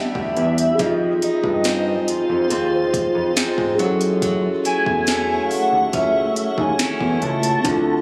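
Sensual and longing, this contemporary R&B excerpt sets a velvety, detuned synth lead carrying the melody with chorus and digital delay over muted, felt-like synth keys, boxy picked archtop guitar arpeggios and a quieter, cloudy granular pad with sidechain pumping that sustains the chords, while a fat, saturated analog bass and an overdriven electronic drum kit with a sharp snare enter at 0.2 s, the whole sounding as if captured on a phone in a club-like room.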